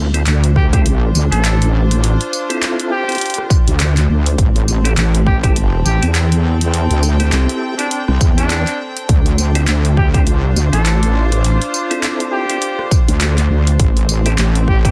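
A heavy, detuned wobble bass sits up front with tube-saturated chorus in this gritty, swaggering glitch hop passage, joined at 0.6 seconds by a punchy layered electronic kick and a distant, roomy jazz-style trumpet melody coated in 12-bit sampler grit and dub echo. Handclaps, hi-hat, rim click and tambourine from a dubstep kit re-recorded in a large room drive the swung groove, while a mellow tonewheel organ with key click and fast rotary speaker fires pumping stabs treated with dub echo. Alongside, a reedy gut-string ensemble with light vibrato pumps through a Dm7 to Am7 progression, all inside a dense, heavily limited modern master.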